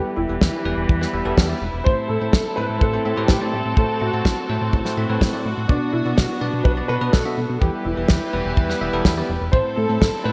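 Italo disco at 125 BPM in a straight 4/4, this sunny, danceable excerpt is cut from a longer piece and cycles through Em, Am and Bm chords. A dark, intimate grand piano carries the melody between D4 and C5, its smooth, vintage tone touched with audible action noise and dressed in ensemble chorus and digital delay. Beneath it, a studio string section holds sustained chords with light vibrato and a reedy, gut-string character, softened by a low-pass filter, while a bell-like tine electric piano adds clean, direct stabs across a broad span. A fat analog bass enters at 0.2 seconds, thick and detuned with sawtooth and square-wave colour, a moving notch and a mellow sustain under a fast attack. The kick and snare arrive at 0.4 seconds, both dry and up front with rolled-off tops, the kick tight and the medium-tuned snare carrying gated reverb. A moderate plate reverb and bright 1980s-style digital production frame the whole groove.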